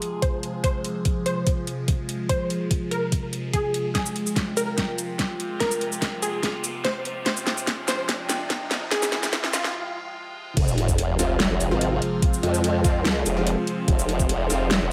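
Menacing and heavy, this half-time wobble dubstep cut from a longer piece moves at 145 BPM in F minor, opening with a detuned, lush unison pluck melody through analog chorus and tape echo over a morphing wavetable pad with phaser and sidechain pumping, a dubstep kit with a huge snare and metallic hats, and a knocking electronic kick, as a filter-swept build-up, drum fill and background riser lead to a break at 9.7 seconds and a drop at 10.6 seconds where a saturated, formant-swept wobble bass with chorus and overdrive takes the front and mellow, full-bodied supersaw stabs with tape echo join.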